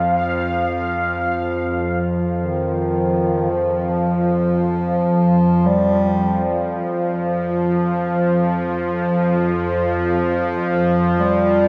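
A mellow, distant bass clarinet enters at 2.4 seconds with a roomy solo line through analog delay, floating over a tense, string-like bowed drone with vibrato; a bubbling, resonant stepped-filter texture sounds only for the opening 1.3 seconds, before the clarinet arrives, all in a dark, desolate free-time ambient drone bathed in a wet, echo-heavy spring reverb.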